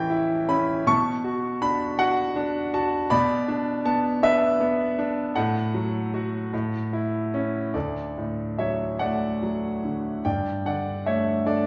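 A clear grand piano opens alone at 0.0 seconds, playing a lyrical classical passage in D major that feels calm and peaceful. The pulse moves freely in a rubato 6/8, settling around 48-54 beats per minute counted in dotted quarters, and the piano spans from D2 up to C#6. Its tone sits up front with a slightly boxy character and long sustain, framed by a recital hall reverb that rings for about 1.4 seconds, as if heard in a church or concert hall. The harmony drifts from A7 through Bm7 and Bmadd11 to F#m/A and A before arriving on D at 7.7 seconds, where a new section begins and later moves to Gsus2 at 10.2 seconds. Cut from a longer piece, the fragment ends at 11.7 seconds, leaving an unhurried, peaceful impression.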